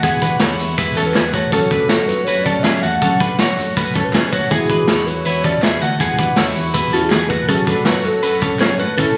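Jangly indie pop at 161 BPM in a bright, nostalgic mood, this one-sentence excerpt sets a warbling, detuned synth lead drenched in chorus, tremolo and slapback echo over clean, warm twelve-string electric guitar arpeggios, a very quiet shimmering twelve-string acoustic with finger squeak, faint mellow lo-fi synth keys, a round, punchy foam-muted bass, an up-front vintage drum kit with tight kick and rolled-off top, and crisp group handclaps entering at 0.4 seconds, all moving from Eadd9 to F#m at 7.5 seconds in a compressed phone recording with light club reverb.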